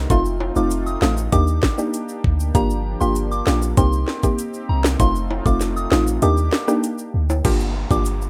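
A smooth, detuned analog pad with chorus, tremolo and sidechain pumping opens this sultry, hypnotic dancehall excerpt in G minor, alongside a deep, boomy 808-style bass at 98 BPM in a straight 4/4. An island pop drum kit sits up front with a knocking kick, sharp snare, metallic hi-hats, rim clicks and crash cymbal, joined by bright, close tube shaker and timbales played with hard hands. A soft, round pluck with chorus carries the accompaniment, while a pure, warbling FM synth bell plays a high melody through chorus and digital delay. The chords cycle through F7, Ebmaj7, Gm7 and Cm7, and the kick drops out from 6.2 to 7.4 seconds. At 7.4 seconds the pad stops and an electronic downlifter enters, with the whole track set in light reverb and the rough sound of a home demo mix.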